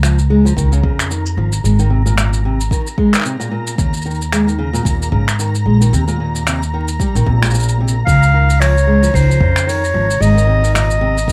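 Pastoral and delicate, this swung folktronica piece at 112 BPM in Db major sets dark, old-stringed fingerpicked acoustic guitar arpeggios over a woody, up-front pizzicato upright bass. Around them sit a natural-sounding brushed jazz kit with finger snaps, hi-hat and shaker, and a faint flickering, grainy granular texture with its own reverb. A deep, tape-toned electronic kick enters at 0.6 seconds, and a distant, roomy clarinet in classical style takes up the melody at 8.1 seconds, all within a rough home-demo mix of small-room ambience and vinyl crackle.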